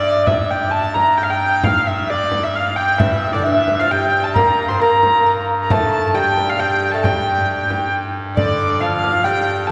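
A wet church reverb with a long 3.0-second tail surrounds this short cut from a longer medieval dance, played live by a band in one room. In 3/4 at 134 BPM in G dorian, the music feels driving and ancient, and it speeds up throughout. A dark, nasal hurdy-gurdy carries the melody up front, its airy, wheel-bowed tone sitting between D5 and C6, while a hollow pipe organ clarinet stop holds a low drone on G2 with a touch of chiff. A close, acoustic frame drum keeps the pulse from 0.3 seconds. At 3.0 seconds a bright, delicate fingerpicked lute joins with a second line between D3 and C4, its doubled nylon strings ringing beneath the melody, before the dance moves into a new section at 8.4 seconds.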